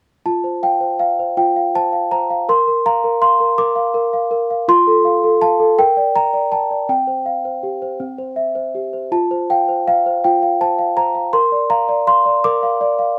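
Tender and innocent, this classical lullaby in 6/8 is a short extract from a longer piece, given to a solo celesta whose bell-like, sweet and dark tone sits up front in a dry, close sound as it moves gently through F, B-flat, G minor and a suspended C chord before settling back toward F and B-flat by 11.3 seconds.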